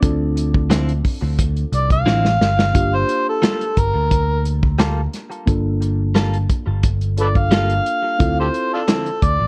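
A straight-eighth soul blues groove in 4/4 anchors this brooding, soulful excerpt, carried by a dark, up-front small-room drum kit with a punchy kick, a medium-tuned snare and a brief drum fill at 2.1 seconds, beside a growly, amped picked electric bass. A mellow, reedy electric piano heard through its built-in speakers supplies harmony with phaser and plate reverb, and a clean, compressed direct-recorded guitar adds picked stabs from 0.7 seconds through phaser, analog delay and plate reverb, over chords moving from Dm9 to Gm9 and back. From 1.8 seconds an overdriven, gritty amplified harmonica takes a jazz-style solo up front, full of light vibrato, tongue slaps and scooped notes, and the recording carries the character of cassette tape with light reverb.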